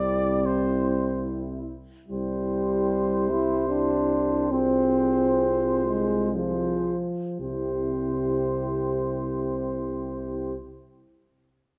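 A classical, hymn-like passage for brass band in C major and 3/4, serene and unhurried, moving with rubato at 56-77 BPM and slowing down from 0.9 to 7.4 seconds as the harmony shifts from C to F minor over C at 4.5 seconds and resolves back to C at 7.4 seconds. A mellow cornet with light vibrato carries the melody between C5 and D5, while a warm French horn section adds a second line in the background and a distant, roomy euphonium fills in the accompaniment. Up front, a smooth-topped trombone sits prominently in the texture, with a tuba anchoring the bass on a low C2, all set in a moderate recital hall reverb in this excerpt cut from a longer piece.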